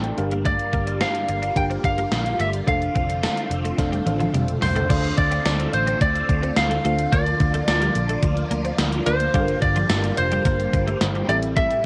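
Heard as a cassette home recording with light reverb and cut from a longer piece, this glossy, nostalgic 1980s-style pop passage at 108 BPM opens with a fill on a soft, round FM electric piano. A swirling, sawtooth string machine with ensemble chorus and phaser sits in the background over a dark, foam-muted fingered bass and a prominent gated digital drum machine with a thumpy kick, gated reverb snare and a drum fill at 3.8 seconds. A bright, clean twelve-string guitar riff with chorus and analog delay joins at 0.2 seconds, and a slightly broken-up, twangy lead guitar carries the melody up front from 0.5 seconds over chords moving through Gm7, Dm7 and Bb.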